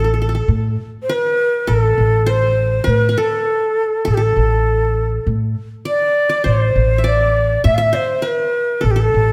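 Arabic maqam ensemble music in a festive mood, in a short passage cut from a longer piece, with a breathy, bright ney carrying the melody up front, its expressive vibrato and tongued notes colored by a slightly distant air. Beneath it, a fingerpicked qanun with bright-edged triple strings plays a quieter second line, while a woody pizzicato upright bass sits forward in the mix. All three play together throughout the 9.3 seconds, set in a moderate scoring-stage reverb.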